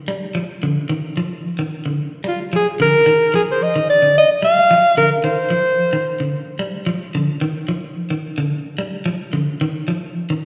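Heard through a venue's PA in a lush, wet hall reverb, this driving, hypnotic afrobeat excerpt at 110 BPM in 4/4, with a sixteenth-note swing, sets a clean, picked electric guitar playing arpeggios up front over an Ebmaj9/D chord, joined from 2.3 to 6.3 seconds by a warm, smooth-topped alto saxophone carrying a pop-style solo melody with vibrato, both parts touched by slapback echo.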